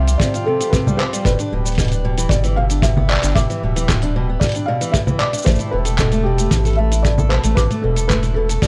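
A straight 4/4 groove at 114 BPM comes from a lo-fi sampler-style kit of congas, handclaps, hi-hat and shaker, compressed, pitched down and muffled, entering at 0.1 seconds, with a punchy, rolled-off kick joining at 0.2 seconds. This short folktronica excerpt feels delicate and wistful, moving through Fsus2, G6 and Asus2 chords. A round, deep analog bass sits up front, while a fingerpicked steel-string acoustic guitar plays arpeggios with fresh strings and a vintage 12-bit sampler grit. The melody comes from a felt-muted upright piano, intimate and boxy with audible action noise and a touch of delay, and a buzzing marimba played with soft mallets adds a woody second line with delay from 0.5 seconds. A reedy, breathing pedal harmonium holds sustained chords in the background, and the production is dark and warm with light studio reverb.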